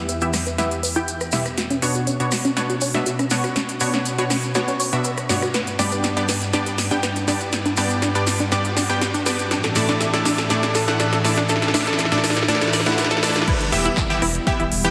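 A smooth, chorused analog pad and a bright, up-front supersaw stab open this emotional, expansive progressive house excerpt at 121 BPM in E dorian, joined by a tight, detuned sequenced arpeggio in the background, a punchy overdriven big-room drum kit with crisp hats and a drum fill, and a grainy tube shaker, as filter sweeps on the pad, stab and arpeggio drive a build-up over Em, Bmadd9, G and Asus4, with a very quiet riser entering at 5.5 seconds before the drop and impact land at 13.5 seconds, where a layered electronic kick arrives and a deep, thick saturated sub bass follows moments later, the pad, stab, arpeggio and sub pumping under sidechain in a lush hall reverb and a dense, heavily limited master.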